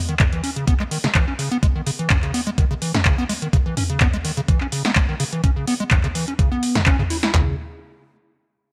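Acid house at 126 BPM in 4/4, this trippy, raw piece sits in C# minor with a 53% swing on the 16ths and tuning at A4 = 439 Hz. A squelchy, hollow square-wave acid bass carries the riff from 0.1 to 7.6 seconds, ranging from B2 to E4 with a resonant filter pluck, fast attack and decaying notes, colored by tube saturation, subtle chorus, sidechain pumping and digital delay. An up-front electro analog drum machine supplies handclaps, toms, metallic hi-hats and a punchy snare, with a short room on the snare, clap and hats. Alongside it, a clean 12-bit digital drum machine with a sampler-style character adds handclaps, toms and a thumpy kick re-recorded in a small room, sitting louder than the analog kit. Light reverb and a bright 1980s-style digital production frame the groove, which moves into a new section at 7.3 seconds just before the cut.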